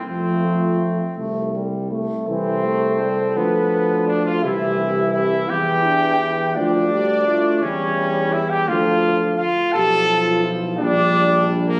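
Heard through a phone in the room, this short cut from a longer classical brass quintet piece carries a moderate concert-hall reverb with a club-like ambience, its noble, warm mood unfolding slowly at 56 BPM in a straight 6/8. A dark cornet with light vibrato sings the close-miked melody while a clear, smooth-topped trumpet sits up front on the second line, a mellow French horn joins at 0.4 seconds, and a distant, roomy trombone fills in the accompaniment. Beneath them an up-front, close-miked tuba anchors the bass as the harmony moves from F through C, D minor and E minor sixth chords before settling on G minor over Bb at 10.8 seconds.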